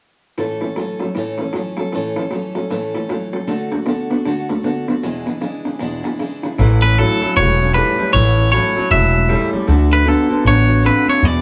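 A slightly broken-up, lo-fi electric guitar through a small old amp plays a twangy riff up front from the start of this retro, rollicking rock excerpt, swinging its eighths at 155 BPM in A major, while a bright, full-bodied dreadnought acoustic guitar picks the accompaniment with audible finger squeak. At 6.6 s a woody, thumpy pizzicato upright bass enters, and at 6.8 s a clean, compressed electric guitar takes up the melody, as the chords move from A through D and E7 and back to A. The band plays live together in a small room with moderate reverb and a softened top end.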